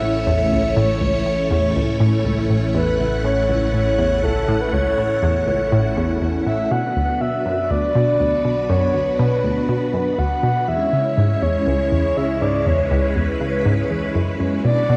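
A breathy, flute-like synth lead carries the melody over a lush string machine's sustained chords, a round analog pluck riff with chorus, cassette tape and delay, and an evolving, ring-modulated drone in the bass, all together from the start of this mysterious, cosmic stretch of sequencer-driven space music in B dorian at 121 BPM. The vintage string ensemble sits bright and up front with phaser and ensemble chorus, while the soft lead wears chorus, tremolo and delay. The harmony moves from A to Bm at 6.7 seconds and C#m at 10.7 seconds, within a dark, warm production and a moderate plate reverb.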